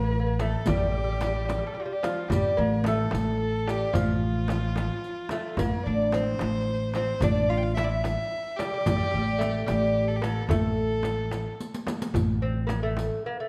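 A dark production sits in a moderate recital hall reverb, giving this brief, soulful Persian modal ensemble piece a hypnotic glow in a straight 6/8. Up front, a fingerpicked lute with nylon double strings, some doubled at the octave, carries the delicate melody, while a close, intimate violin adds a second line above it with an airy sul tasto bow, soft attack and light vibrato. A woody pizzicato upright bass, also up front, holds a low A1 beneath them. Farther back, a tight, vintage-toned, band-limited tombak played with hard hands joins a close, dry frame drum, and a riq adds bright jingles under soft hands. The violin stops at 11.6 seconds as a drum fill leads into a short new section at 12.1 seconds, and the piece, cut from a longer performance, ends at 13.5 seconds.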